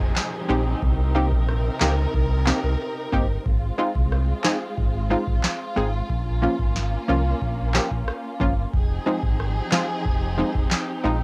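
Punchy, detuned sawtooth chord stabs with a warbling, vintage chorus and a touch of plate reverb stand up front from 0.5 seconds, snapping in with a fast attack and decaying over an F minor progression that moves from Fm7 through Cm7, Ab6 and Bbm. This is a tough, hypnotic dancehall excerpt at 91 BPM in a straight 4/4, cut from a longer piece. A booming analog drum machine drives it with a deep kick, crisp snare, rim click and handclaps, its sound tape-warm from cassette and re-recorded in a small room, while a full, mellow sine sub bass with an octave sits just as far forward, holding sustained low notes. Alongside them, a lush symphonic string section bows sustained chords with vibrato and expressive portamento. A very quiet electronic downlifter sweeps through the opening 3.5 seconds, and the whole track carries the light reverb and homespun character of a cassette home recording.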